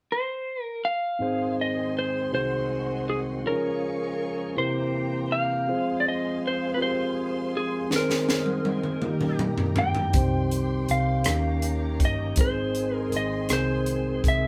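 An electric slide guitar opens this jubilant, uplifting slow gospel excerpt in 6/8 at 54 BPM in Ab major, its bright, slightly broken-up tone carrying the melody up front before a mellow tine electric piano, a reedy tonewheel organ with fast rotary speaker and chorus vibrato, and a lush, woody string section join at 1.2 seconds. A crisp fusion drum kit with a high-tuned snare enters with a fill at 7.9 seconds, and a dark, round hollow-body electric bass follows at 10.1 seconds. The band sounds as if it is playing live in one room with moderate reverb.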